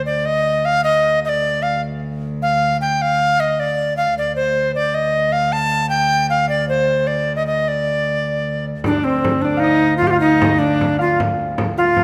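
Medieval dance in 6/8, moving at 102 BPM in dotted quarters with a straight, driving feel and a mysterious cast from its D phrygian mode, heard as a short cut from a longer piece. A bowed, fretted viola da gamba holds a rich, pure drone on low D2 throughout, its soft attack and light vibrato giving it a floating, ringing quality. Up front, a tenor recorder carries the melody from C4 to A5 with a breathy, bright, reedy straight tone and gentle onsets. At 8.8 seconds a concert harp enters with a fingerpicked second line between C5 and F5, its acoustic strings warm and resonant, alongside a frame drum struck with hard hands and a small-room character. The ensemble sits in a wet recital hall reverb with a 1.6 s decay, and the passage runs to 12.0 seconds as a single repeated section.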